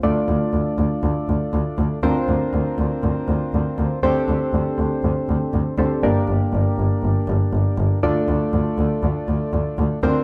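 A single bowed double bass sits up front, its rich, focused tone carrying vibrato while sounding slightly distant, holding the low end between G1 and D2. This is a melancholic, cool synth-pop passage at 120 BPM in a straight 4/4, cut from a longer piece and running about 10.2 seconds. Alongside the bass, an electric-piano-like synth plays accompaniment from A3 to D5: a soft, round voice built from triangle and sine waves, wave-folded and shaped by a filter sweep, with a fast attack that decays into a mellow, evolving tail thickened by chorus. Both parts play from 0.0 seconds to the end, moving through Dm, Bbadd9/D, D7sus4 and Gm before returning to Dm at 8.0 seconds. A moderate concert-hall reverb with a 2.2-second decay surrounds the pair, lending the sparse arrangement a spacious air.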